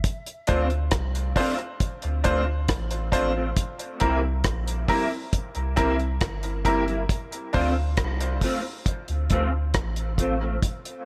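Set in a light small-room reverb, this hypnotic, spacious dub reggae excerpt in D minor moves at 68 BPM over Dm7 and C7, with a dry, dark drum kit of tight kick, hi-hat and rim click starting at 0.0 s, a round sine sub bass and a clean, fingered electric guitar with ensemble chorus and dub echo entering at 0.5 s, and a bright, woody, slightly detuned upright piano with audible action noise adding echoing stabs until 7.7 s.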